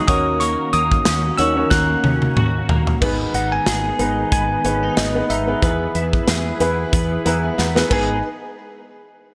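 This is a short excerpt of 1980s-style pop in G# minor at 92 BPM, with a lightly swung sixteenth-note feel and a nostalgic, moody air. A bell-like tine electric piano carries the melody high in its range through a delay, while a clear concert grand piano with deep bass supports it with accompaniment and adds a fill from 6.9 to 8.2 seconds. A smooth, detuned analog pad holds sustained chords in the background with chorus, and a twangy twelve-string electric guitar plays a compressed, picked riff through ensemble chorus and delay. A round, hollow-bodied fretless bass and an up-front studio drum kit with a punchy kick, medium-tuned snare, tambourine and toms enter at 0.1 seconds, the drums treated with gated reverb and breaking into fills from 1.7 to 3.0 seconds and again near the end. The harmony moves from D#m7 to G#m at 3.0 seconds, then to E and back to G#m, all framed by a bright, polished digital production in a small, lightly reverberant room.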